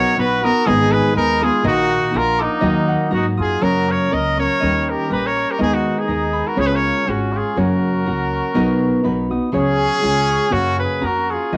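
Captured as a home cassette recording with moderate studio reverb, this romantic, proud mariachi piece moves at 122 BPM in a lightly swung 2/4, opening in Eb minor before turning to F# major at 3.6 s. A clear, roomy lead trumpet sings the melody with vibrato, sounding distant yet up front, while a second classical-style trumpet carries a lower line beneath it. A full-bodied, fingerpicked nylon-string guitar drives the accompaniment, a ringing concert harp spins arpeggios in the background, and a woody pizzicato upright bass with steel strings joins at 0.2 s.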